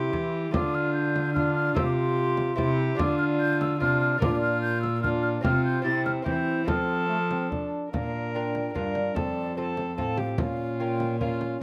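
Festive yet stately, this excerpt from a Renaissance-style consort dance moves in a brisk 3/4 at 147 BPM, with an airy, hollow concert flute carrying the melody high above a reedy, gut-strung viola second line, a soft-attacked, clear trombone, and a delicate fingerpicked lute set in the background. A rich, bowed cello anchors the bass while a dry, close frame drum enters at 0.1 seconds, and the harmony circles through C, D minor and B-flat before a brief second section at 7.9 seconds that closes on a darkening B-flat minor. Light reverb and close, detailed microphones keep the period-style strings up front and every line distinct.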